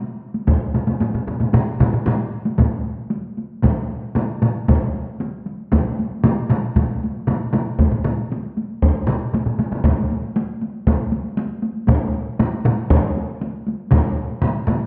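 Solo taiko drums played with heavy sticks boom out distant yet up front over three taiko ensembles (one with heavy sticks in a live room, one with hard sticks sounding far off in a large space, and one with hard sticks, close, dry and very quiet) in this ceremonial, driving Japanese traditional excerpt in straight 4/4, which speeds up throughout, moves into a new section at 2.6 seconds, and rings through a reverberant recital hall with a dark, muffled top end.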